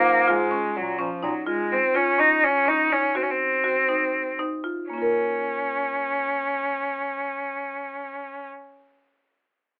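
In a straight 7/8 at 234-253 BPM counted in eighths, this pensive, urgent contemporary chamber piece in Bb minor slows down from 1.5 to 4.9 seconds as the harmony moves from Bbm7 through a rootless Absus4 and Cdim to Bbm. A single bowed cello carries the melody up front, bright and biting with light vibrato, while a woody rosewood marimba played with medium mallets spins arpeggios, and a clear, soft-attacked bass clarinet supplies the bass only until 1.3 seconds. The short cut sits in a moderate booth ambience with a telephone sound.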